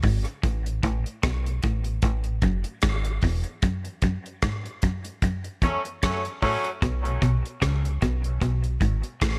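Set at 75 BPM in 4/4 with a lazy 16th-note swing, this dub reggae excerpt rides on a damped 70s drum kit whose dry, tight kick, hi-hat and rim click sit up front. A deep fingered electric bass, dark, round and foam-muted with a direct, amped tone, holds the low end just as prominently. An electric guitar at the edge of break-up plays a twangy, picked riff low in its register, its tone slightly broken-up and carried off by dub echo. A clear horn section with vibrato slips in briefly from 5.6 to 6.7 seconds with a pop-style second line, roomy and carried by the same dub echo. The harmony moves from an A5 through a chordless stretch of band accents to a G#madd11 as the second section arrives at 6.8 seconds, keeping the mood hypnotic and heavy within a natural studio ambience.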